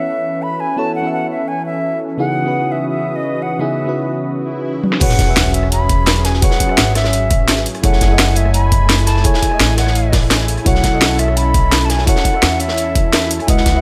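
A tongued, pure-toned flute melody with delay floats over a round, chorused FM electric piano and a smooth, warbling analog pad under a filter sweep, until a background swell and sub drop leads into a drum fill at 4.8 seconds and a drop at 5.0 seconds, where woody pizzicato upright bass, a knocking overdriven kick, a cracking-snared drum and bass kit and a gritty breakbeat layer lift this uplifting, dreamy liquid drum and bass excerpt.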